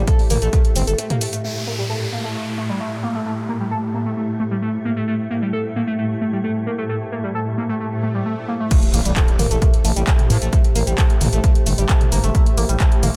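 A screaming, guitar-like synth lead runs through nearly this whole excerpt of driving, industrial peak-time techno, its distorted sawtooth and pulse-wave tone coloured by phaser, vibrato, a subtle chorus, cassette-tape grit and dub echo. Beneath it, a swarming, detuned drone sustains throughout alongside a deep, moody ambient pad in the background, both soaked in built-in reverb and sidechain pumping. A growling, thick FM bass opens the piece, joined by a punchy, layered kick. The kick drops out at 0.6 seconds and the bass by 0.9 seconds. An analog drum machine of hi-hat, shaker, handclaps, toms and crash cymbal, filtered and re-recorded in a large room, carries on through a short break from 1.0 seconds before stopping at 1.4 seconds. Electronic sound effects, a downlifter, swell and impact, run from 1.4 to 10.5 seconds. The swell leads into the drop at 8.7 seconds, where kick and drum machine return, with the bass following at 8.9 seconds. 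The dense, heavily limited master keeps the sound close and hard-hitting under a light reverb.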